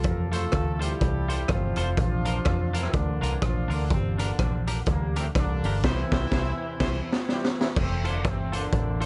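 A raw garage drum kit sits up front in this cheerful, upbeat ska excerpt at 124 BPM in F major. Its gritty, saturated sound pairs a high-tuned snare and boomy kick with crash, hi-hat and rim clicks, and a drum fill arrives at 6.8 s inside a band accent. A muted fingered electric bass gives a round, punchy low end while a distant, roomy horn section carries the melody in octaves with vibrato and tape echo; from 0.3 s a bright, clean semi-hollow guitar adds picked accompaniment with its own tape echo over a faint, jingly tambourine that stops at 5.7 s, all on swung eighths moving through F, Bb, G minor and C in a dark, dry production.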